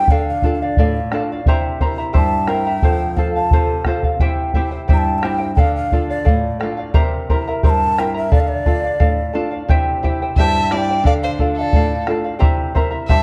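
Wistful and earthy, this Andean folk excerpt moves at 88 BPM in 2/4 through D minor, C7, F and C changes, with a breathy, wooden large quena carrying the melody over shimmering fingerpicked charango, dark fingerpicked flamenco guitar and a round, up-front bombo that enters at 0.1 seconds, before a rich, vibrato-laden bowed violin adds a second line from 10.4 seconds, all set in a dark production with a moderate stage reverb.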